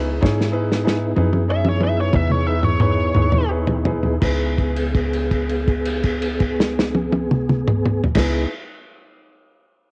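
Slow blues in 12/8 at about 55-65 BPM, in C# minor on a C#m7 chord, this mournful, smoky fragment of a longer piece has a clear, short-sustained grand piano comping and a soft, flute-like tonewheel organ holding chords through a slow rotary speaker and chorus vibrato, over a tight, punchy sawtooth sequencer bass with a filter pluck. Up front, a muffled, lo-fi soul drum kit with dark cymbals plays a fill with toms and crash while the tempo slows, and a biting, overdriven lead guitar solos between 1.5 and 3.5 seconds with analog delay and cassette-tape grit. A held note carries the second half from 4.2 seconds, the whole sitting in light studio reverb with the hazy character of a home cassette recording.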